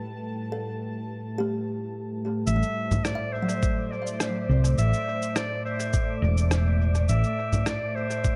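A straight 4/4 pulse at 104 BPM carries this deep, spacious ambient dub fragment in A dorian, where a breathy, chorused pad and a faint, wind-like tuned noise texture hang from the start, a woody kalimba spins tape-echoed arpeggios from 0.5 s, and at 2.5 s a smooth-topped clarinet melody with tape echo, a round, dark hollow-body electric bass up front, and muffled, overdriven, pitched-down electronic cabasa, congas and rim click with dub echo arrive, joined at 3.6 s by a thumpy, compressed electronic kick, inside a dark, lightly reverberant mix.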